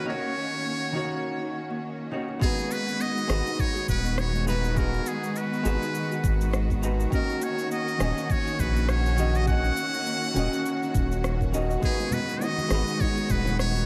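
A buzzy, metal-muted trumpet with a touch of delay carries the melody of this wistful sunset chillout excerpt from the start. It sits over a dark, clean archtop guitar with tape echo, lush bowed string chords, and woody kalimba arpeggios ringing in the background, all in a dreamy, reverb-soaked mix. A knocking electronic kick, shaker and rim click enter with a light swing at 2.4 seconds, followed by a round, deep analog bass up front at 3.3 seconds, and distant, softly played bongos and congas join at 12.0 seconds.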